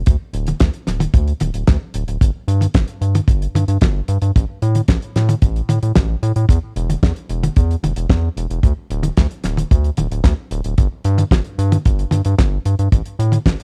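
A tight, dry acoustic kick drum sits up front in this short italo disco excerpt, which moves at 112 BPM in a straight 4/4 and carries a bittersweet, nostalgic mood. Alongside it, a round analog bass runs from the very start to the end at 13.6 seconds, spanning D1 to A2 with a deep, dark tone that blends square, sine, triangle and sawtooth colors with a wave-folded edge, a fast attack and sustained notes. A damped 1970s drum kit joins at 0.1 seconds with hi-hat, toms and a fat snare, its sound warm and rolled-off at the top and placed close to the listener. The recording has a dry, close 1970s studio character with little reverb. Tuned to A4 = 442 Hz, the passage stays within a single section and is cut from a longer piece.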